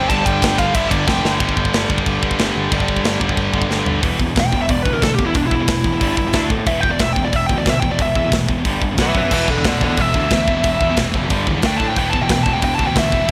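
This excerpt opens on a heavy, epic wall of distorted high-gain guitar riffs in E minor at 182 BPM in straight 4/4, with a dark, up-front lead guitar stating a brief melody before the drums crash in a fraction of a second later. Beneath the melody, two heavy guitars and a scooped guitar grind out bright, picked riffs in the background, one of them double-tracked, while a fuzz-laden overdriven bass, both direct and amped, anchors the low end. The acoustic metal kit sits forward in the mix with a tight kick, a medium-tuned snare and a rolled-off top, working china, crash and ride cymbals, hi-hat and toms, and it drops two short fills to mark the changes of section. After a riff-driven passage, the lead guitar returns at 4.4 seconds for a solo over chords moving among E5, G5, D5 and B5, while one of the heavy guitars drops out at 4.0 seconds and rejoins at 9.3 seconds. A lush hall reverb and a touch of small-room ambience frame the bright 1980s-style digital production.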